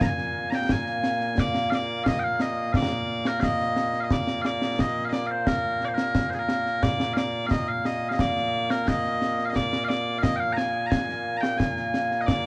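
Loud, bright and piercing bagpipes lead up front in this ceremonial, proud piece of Scottish pipe music, carrying a continuous solo melody in Bb mixolydian at 88 BPM in a straight 2/4 across a range from Bb2 to Bb5. Close, acoustic concert snare drum and concert bass drum, with dark cymbals, play beneath the pipes for the full 12.4 seconds. The recording has light reverb and the worn, warbly pitch drift of old cassette tape, and the same section is played twice in this short cut from a longer piece.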